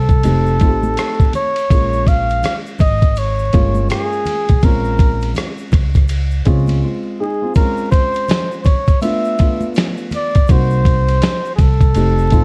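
Smoky and nocturnal, this jazz-hop cut from a longer hip hop piece moves with a swung 16th-note feel over a dark, warm production dusted with vinyl crackle and very little reverb. A trumpet with a bucket mute carries the melody, its veiled, close-miked tone touched with light vibrato in a jazz-style solo voice. Beneath it, a pizzicato upright bass with steel strings sounds woody, while a dark baby grand piano comps in a mellow, boxy register with short sustain and audible action noise. The sampler-style drum kit sits up front, compressed and gritty, with a thumpy kick, fat snare, hi-hat, ride and rim click re-recorded in a large room, and an egg shaker and congas played with hard hands stay close and dry in the background. A brief break at 6.8 seconds leads into a restatement of the opening section at 7.6 seconds, where the harmony shifts through Bbm9/Ab, Dm69/A and Cm7b5.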